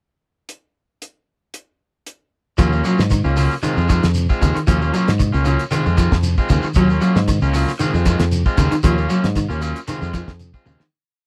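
A dry, close 1970s-style studio sound frames this short, driving and hypnotic afrobeat piece in Eb dorian at 115 BPM, where a cloth-damped, thuddy drum kit with a fat snare, tight kick and gritty, rolled-off top plays a pickup bar alone from 0.5 seconds. At 2.6 seconds the groove arrives: a dark, round fingered bass riff, a distant, grainy shekere, and two slightly broken-up picked electric guitars, one repeating a chorused arpeggio ostinato and the other adding twangy stabs in upper chord shapes. The band cycles between Ebm9 and Fm7 until a fade-out begins at 8.8 seconds, with a drum fill near the very end.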